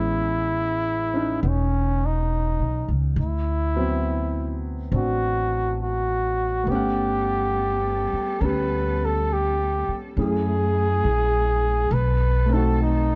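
A mellow flugelhorn carries the tender melody up front from the first moment, its soft attack and gentle vibrato set over an intimate concert grand piano with audible action noise and a growly, thumpy pizzicato upright bass, in a slow 69 BPM jazz ballad with a light swing. At 6.7 s a dark bowed cello section enters in the background with sustained chords as the harmony moves from Amaj9 and D13 through Gmaj9#11 and F#m9 to B7b9. Light reverb and a warm production keep this short passage, cut from a longer piece, close and tender.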